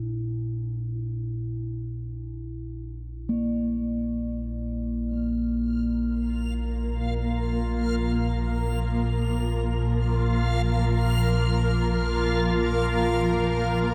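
Ominous and unsettling, this dark ambient drone excerpt drifts in free time, opening on a deep, rumbling drone that fades in beneath a ringing, metallic bronze singing bowl playing slow-beating arpeggios through a diffuse ambient delay until 10.6 seconds. At 6.2 seconds a blurred, evolving granular cloud pad adds sustained chords, and a reversed, dreamy swelling texture soon joins high above it. The whole is bathed in a huge, wet reverb, with the drone kept dark and up front against the brighter glow of the upper layers.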